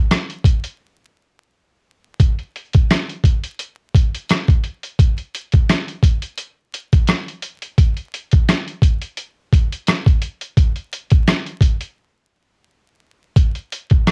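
Dry, crackling home-cassette sound frames this tough, gritty hip hop excerpt, where an up-front, compressed, pitched-down sampler-style boom bap kit of thumpy kick, medium-tuned snare, rim click and hi-hat rides a light sixteenth-note swing, with breaks at 0.8 and 12.0 seconds.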